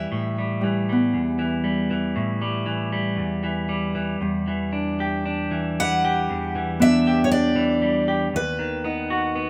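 Acoustic folk-pop ballad with a nostalgic, heartfelt mood, moving at a slow 58 BPM in a straight 4/4, tuned slightly sharp at A4 = 441 Hz. A picked steel-string acoustic guitar carries the melody high in its range, its jumbo body giving a bright, full-bodied tone. Beneath it, an up-front clean electric guitar supplies warm picked accompaniment reaching down into the low register, while a fingerpicked Celtic harp adds ringing arpeggios in the middle range. All three parts play together throughout this 9.5-second cut from a longer piece, set in light reverb. The harmony moves from an open A7 chord to Em7 as a new section begins at 4.2 seconds, then arrives on B over D# at 8.3 seconds.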